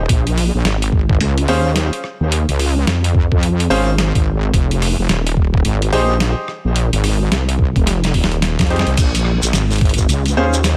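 A heavy, saturated wobble bass with a detuned sawtooth edge and chorus sits up front in this swaggering, gritty glitch hop excerpt, set at 108 BPM in Bb dorian with a swung 16th-note feel over Bbm7 moving to Fm7 and back. Pitched-down, tape-toned sampler drums carry a thumpy kick, a medium-tuned snare, hi-hat, rim click and crash in a small room, with a drum fill at 7.9 seconds. Intimate baby grand piano stabs, with audible action noise, sidechain pumping and delay, enter at 1.5 seconds, and a grainy, close shekere joins at 9.0 seconds.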